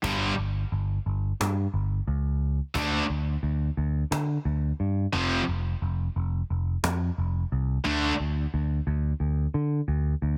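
A driving, menacing hard rock passage in D minor at 88 BPM opens with two picked guitars playing a riff together over growly, punchy picked electric bass and a snappy cajon struck with hard hands, all moving through G5, D5 and F5 power chords. The scooped, high-gain guitar is bright, distorted and up front, while the semi-hollow guitar sits beneath it with a warm, overdriven hollow-body tone. The cajon stops at 7.0 seconds and the guitars at 8.1, leaving the amped bass alone until the cut at 10.4 seconds, all in a dry, dense and heavily limited modern mix.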